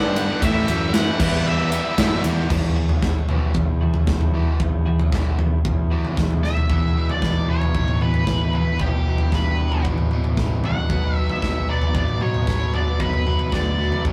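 Cathartic and brooding, this quiet-loud alternative rock passage moves at 114 BPM in E dorian, cut from a longer piece and captured as a rough rehearsal-room recording with light reverb. A dark octave-fuzz lead guitar carries the melody over riffs from a cranked stack guitar in the background, a compressed overdriven electric guitar and a very quiet, double-tracked, scooped high-gain guitar, while a growly fingered fuzz bass and a punchy, up-front big rock drum kit with bright cymbals drive underneath. A twangy twelve-string electric guitar adds faint arpeggios from 2.8 seconds, and after a drum fill at 6.4 seconds the chords move to E5 and then Bm7.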